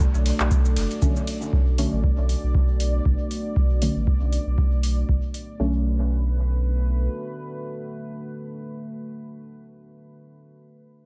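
Echo-heavy and lightly reverberant, this deep, hypnotic dub techno excerpt sets a round sine sub bass and a tape-warm analog kick beneath an overdriven deep house kit of cabasa, handclaps, hi-hat and ride cymbal treated with dub echo, while a moody, detuned sawtooth pad with chorus and sidechain pumping holds a Bm7 chord, a bright, resonant bubbling filter texture sits high above, and a soft, ring-modulated chord stab with phaser and dub echo enters at 1.0 seconds, with both pad and stab taking a filter sweep from 1.5 to 5.6 seconds.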